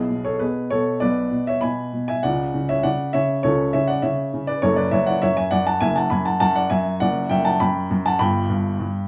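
A baby grand piano carries this short classical-period sonatina on its own, its tone warm and natural and placed up front in the mix. The mood is elegant and cheerful, moving at 100 BPM in 4/4 with a rubato feel that lets the phrasing breathe. The piano spans a generous range, from F#1 in the bass up to B5. The harmony moves from E/B through a rootless A/C# at 2.2 seconds, then to F#m, D/F# and finally G at 8.2 seconds. A light reverb and the ambience of a small room give the sound an intimate setting. Lasting about 9.1 seconds, this passage is cut from a longer piece.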